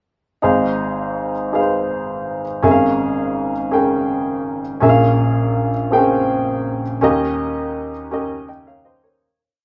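Set in a slow, straight 6/8 at 55 beats per minute counted in dotted quarters, this short gospel piece unfolds in Ab major with a soulful, jubilant mood. A lone upright piano carries everything from 0.4 to 9.4 seconds, its tone intimate and woody, slightly detuned, with audible action noise and a natural, up-front presence. The player sounds chords in quarters using drop2 voicings, decorating them with grace notes and short fills across a span from Ab1 to G5. The harmony moves from Ab6 through Db6/Ab and Bbm7 to Eb7, and a fade-out begins at 7.0 seconds and runs to 9.2 seconds. A moderate large-studio reverb gives the piano the feel of a live room while keeping it close.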